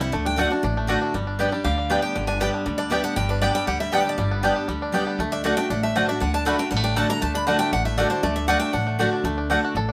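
Bluegrass excerpt, joyful and driving at a straight 237 BPM, where a bright, full-bodied picked steel-string acoustic guitar takes an up-front solo melody high in its range until 9.2 seconds, over a twangy fingerpicked banjo line, a second up-front picked acoustic guitar playing accompaniment, woody mandolin stabs from 0.4 seconds, and a thumpy pizzicato upright bass moving between D, G and D chords in a moderate studio reverb.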